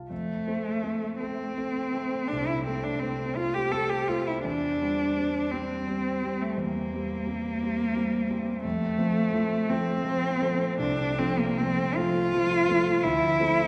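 The rhythm moves in 12/8 at about 56 beats per minute, counted in dotted quarters, with uneven beats and a free, rubato give and take. This tender romantic duo for cello and grand piano is cut from a longer piece. The concert grand starts the accompaniment at 0.0 seconds, an intimate, smooth and vintage-sounding instrument with deep bass, audible action noise and a range from C2 up to A5. A single bowed cello carries the melody from 0.1 seconds, focused and clear, with vibrato, singing between A3 and A4 and sitting a little louder than the piano. Both instruments sit up front, while a wet concert hall reverb with a 2.3 second decay lends the sense of hearing them from further back in the room. The harmony moves from F to C7/E at 4.5 seconds, back to F, and onto Dm7 at 13.0 seconds.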